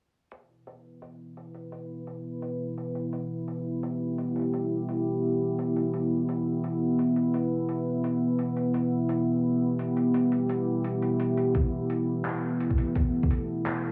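Half-time drum and bass at 171 BPM in E minor with a swung, cinematic and spacious mood, this excerpt sets a deep, detuned sawtooth pad holding sustained chords with chorus and sidechain pumping over gritty, pitched-down sampler-style handclaps and hi-hat in a small room, a knocking electronic kick arriving up front at 11.5 seconds, all bathed in a lush hall reverb and a filter sweep running from 0.3 seconds to the end.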